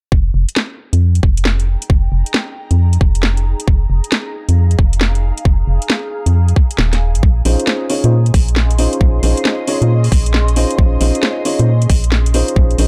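A skippy, swung two-step rhythm drives this moody UK garage excerpt, with a tight, up-front electronic kick and a tape-warm garage kit of cracking snare and metallic hi-hats beneath a hollow, organ-like FM bass carrying tube saturation and a filter sweep, while an ethereal, airy pad with chorus, phaser and sidechain pumping fades in from 1.6 seconds and a dark, boxy baby grand piano adds delayed stabs from 7.5 seconds as the harmony shifts from Fm11 to Bbm11.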